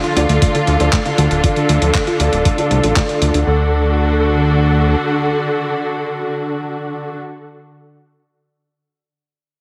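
A fat, detuned sawtooth bass with tube saturation sits up front in this danceable, bittersweet italo disco excerpt, alongside a dark, woody string section holding lush sustained chords throughout. A chorused, delayed analog pluck with vintage 12-bit grit plays arpeggios, and a mellow baby grand adds filtered, delayed stabs; both sit in the background and carry filter sweeps over the opening 3.5 seconds. Gritty, tape-warm sampler-style handclaps, hi-hat and a thumpy kick drop out by about 3.4 seconds, and a hall reverb and heavily compressed, radio-like sound shape the mix.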